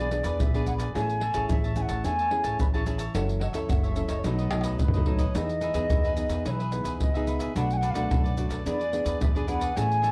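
A wooden flute carries the melody in this festive, sunny samba and choro passage, its airy, warm wood tone sounding distant and slightly unsteady, with vibrato, a soft attack and a slapback echo. Underneath, a crisp, bright cavaquinho picks out the accompaniment alongside a fingerpicked nylon-string guitar with a classical touch, while a woody, growly upright bass played pizzicato on steel strings anchors the low end. The percussion of egg shaker, pandeiro, tamborim and a deep surdo sits up front, compressed and saturated, and a drum fill arrives between 4.5 and 5.4 seconds. At 109 BPM in straight 4/4 and E major, the harmony moves through E7, Amaj7, F#m7 and B7 before settling on Emaj7, then passing through Bm7 back to E7. Light reverb and the worn, warbling character of old cassette tape, with its drifting pitch, colour this short cut from a longer piece.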